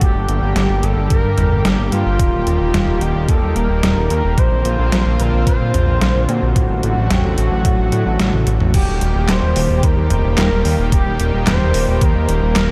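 Nostalgic and nocturnal, this synthwave fragment in a straight 4/4 sets a smooth, expressive sawtooth lead with vibrato, lush chorus and shimmer reverb over a warbling, vintage unison pad with sidechain pumping, a fat, detuned analog bass sitting up front, an overdriven, detuned 8-bit drum machine with medium-tuned snare, handclaps, hi-hat, toms and crash, and a thumpy, overdriven kick that drops out at 12.1 s. A drum fill at 8.3 s closes a passage over Gm, Eb, Bbadd9 and D/A and leads into a new section on Eb, all in a dreamy mix soaked in cathedral reverb.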